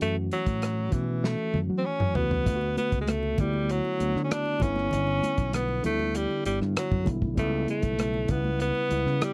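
An edgy alto saxophone with vibrato sits up front, singing a romantic, smooth melody over this short cut from a lush 1970s-style soul piece, moving through F#m7, D6, G6 and C#m7b5. Beneath it, a worn, slightly out-of-tune tine electric piano with light overdrive plays the accompaniment, while a round, punchy fingered electric bass and a dark soul drum kit with a tight kick and rolled-off top hold the groove, the drums playing a fill from 1.2 to 2.5 seconds. Very quiet, bright congas with a damped, thin skin join at 2.5 seconds, all captured in a dry, close studio sound with little reverb.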